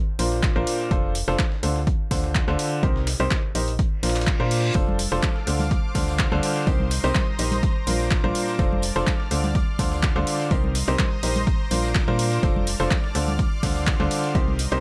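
A clear, worn baby grand piano sits up front with audible action noise, playing a short-sustained riff over a Bbadd9, F6, Dm7 and Cm7 progression, pumping against an overdriven electronic kick in this feel-good, uplifting piano house cut from a longer piece at 125 BPM with a light swing. A hollow, organ-like FM bass with tube saturation and sidechain pumping anchors the low end, while an overdriven analog drum machine supplies handclaps, hi-hat and rim click and a very quiet, gritty sampler-style kit adds hi-hat and snare. After a reverse cymbal at 4.1 seconds, bright tambourine and congas join in the background and a silky, detuned string pad with ensemble chorus and vibrato enters at 5.0 seconds, all set in a digital ambience.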